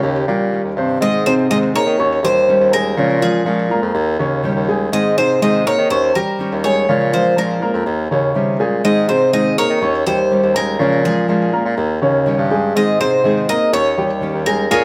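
A bright, metallic Cuban tres carries the melody up front from the start, its doubled strings colored by tape echo, over fingerpicked nylon-string guitar with finger squeak, mellow grand piano arpeggios with audible action noise, and a roomy bassoon bass line with light vibrato. This relaxed Latin excerpt moves at 123 BPM in a straight 4/4, cycling through Eb7, Ab and Bbm7 chords under a light reverb.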